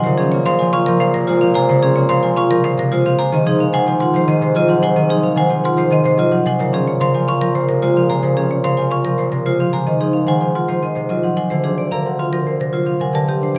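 Set in a straight 3/4 at 110 BPM, this urgent, hypnotic excerpt of minimalist classical pattern music in Bb minor sets a bright, percussive hard-mallet marimba melody over an up-front, fingerpicked concert harp accompaniment, with ringing vibraphone arpeggios carrying medium motor vibrato, dry, woody rubber-mallet xylophone arpeggios that stop at 13.3 seconds, and a mellow, vintage bassoon bass line entering at 0.1 seconds, all moving through Bbm7 and Ab7 before a closing D7alt in a moderate large-studio reverb.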